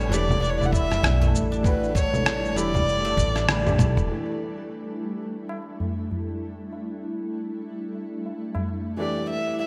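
A swung, earthy organic downtempo groove is carried by a gritty, tape-worn sampler-style kit of congas, rim click, shaker and toms, a thumpy compressed electronic kick, and high-tuned ringing tabla, while a woody pizzicato upright bass holds the low end until a drum fill and band accent close the opening stretch at 4.1 seconds. Above it, an intimate bowed kamancheh sings with light vibrato, a soft attack, portamento and an airy bow, its melody echoed by delay. A mellow felt-muted upright piano sits in the background and a blurred, evolving granular cloud pad pumps beneath, both lingering after a silvery fingerpicked guzheng's arpeggios end at 7.1 seconds and the kamancheh returns briefly at 9.0 seconds, all set in a plate-reverb space with bright 1980s-style digital polish.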